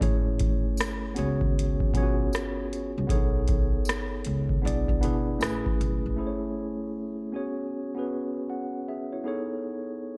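A clean tine electric piano, low-pass filtered and heard up front through its built-in speakers, plays from the very start of this nostalgic, mellow lo-fi hip hop excerpt in A major at 78 BPM with a 16th-note swing. Alongside it from the first moment are a woody, thumpy pizzicato upright bass on gut strings and a booming analog drum machine with a deep kick, metallic hats and rim clicks, re-recorded in a large room and also up front. A jingly, bright tambourine sits close and dry in the background from 0.8 seconds, and from 6.2 seconds the electric piano carries on alone through jazzy chords like Amaj7, C#7sus4 and B13, all with little reverb.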